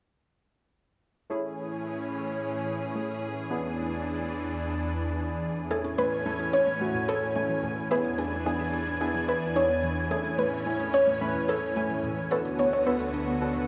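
A dark, soft pluck carries the melody of this euphoric, upbeat pop excerpt in A major at 109 BPM, entering at 5.7 seconds with chorus and tape echo alongside a woody, mallet-like synth pluck that plays arpeggios in the background with the same effects. From 1.3 seconds, mellow analog keys with a filter sweep and a lush, detuned unison pad sitting up front, both with chorus, play the Amaj7 and E7 chords before a move to D6. The dreamy mix is soaked in a huge ambient reverb over a small-room ambience.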